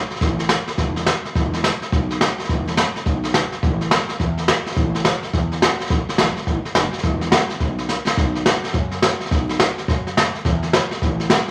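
Rollicking and upbeat, this short rockabilly excerpt, cut from a longer piece, rides a fast 211 BPM in 4/4 with a swung eighth-note feel in E major. A jazz kit played with brushes sits up front, its medium-tuned snare, punchy kick and hi-hat carrying the pulse from start to finish. Beneath it, a plucked upright bass with gut strings gives a woody, dark, thumpy low end, ranging from E1 to F#2 and sitting lower in the balance than the drums. Both parts play together throughout, and a drum fill arrives at 7.9 seconds. A moderate large studio reverb opens up the sound, and a layer of vinyl crackle lends it an aged, dusty character.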